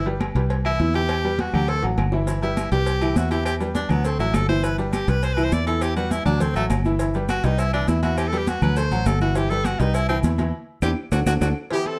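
Festive, sunny salsa at 204 BPM in G major, this piece is cut from a longer work and opens with an edgy, forceful tenor saxophone solo with vibrato up front over a bright, slightly detuned upright piano, a round fingered electric bass, background congas, ringing agogo bells and timbales, tight cowbell and bongos, and very quiet woody claves, with grainy maracas joining at 2.3 s, drum fills and a band accent leading to a clear, tight horn section at 11.7 s, all in a dark production with light reverb.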